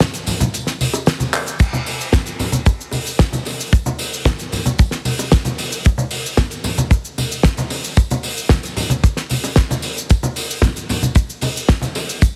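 Heavily compressed with a radio-like squeeze, this nu-disco excerpt sits in a small room with a light touch of reverb, and every part is placed up front. It opens with a break in which the damped 70s drum kit and the percussion play alone, with a drum fill arriving at 1.3 seconds. The kit is acoustic and dry, built around a fat snare, with hi-hat, crash cymbal, handclaps and cabasa filling out the groove. Tambourine, congas and bongos add a bright, acoustic layer with hard hands and a small-room character. At 1.6 seconds a tight kick drum enters as the loudest element, driving a straight 4/4 feel that carries a sensual, sleek mood through to the end.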